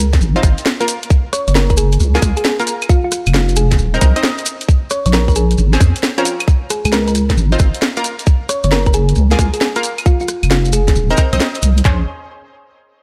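Swung 16ths at 134 BPM drive this moody, soulful two-step UK garage cut in Bb minor, where a tight kick, handclaps and toms sit up front beside a cracking snare, hi-hat, claves and rim click in studio reverb, grainy maracas hover in the background, a deep, saturated wobble bass anchors the low end, punchy detuned chord stabs with chorus and delay arrive at 0.4 seconds, and a round, tine-like thumb-piano pluck carries the melody from 1.3 seconds over a dark, warm production.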